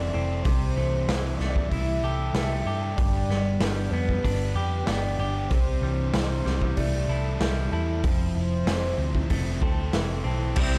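Opening on a horn-like synth lead with chorus and slapback echo, set over a very quiet clean direct guitar's arpeggios, a biting overdriven riff washed in reverse reverb, a thick fuzz guitar with lush chorus and a round, foam-muted bass, this dreamy, hazy shoegaze and dream pop rock excerpt moves at 95 BPM in C major through C6, G and Fmaj7 as a gritty, up-front garage drum kit enters at 0.4 seconds, before a reedy harmonium and a bright, double-tracked stack guitar with phaser appear in the background at 10.6 seconds in a dark small room.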